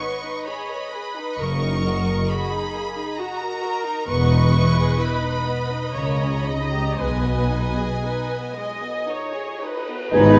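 This is a slow, romantic classical movement for symphony orchestra in G# minor, elegiac and melancholic, moving in a rubato 3/4 at around 56-68 BPM and cut from a longer piece. Two violin sections open together, one carrying a rich, smooth, vibrato-laden melody up to C#6 while the other shapes a second line beneath it, with a clear, distant viola section filling in the accompaniment. At 1.4 seconds a lush, up-front double bass section and an expressive cello section with portamento join on the bass as the harmony moves from G#m through D#m/F# and Emaj7(no3) toward D#7/C#. From 7.0 seconds, over a G#m/B chord, dark cymbals and tam-tam sit close and dry in the background. At 10.1 seconds an accent brings in the winds and brass: a pure flute section, a warm oboe, a mellow, roomy clarinet, a very quiet bassoon, a tight trombone section and a prominent French horn section holding B4. The whole orchestra sits in a moderate scoring-stage reverb.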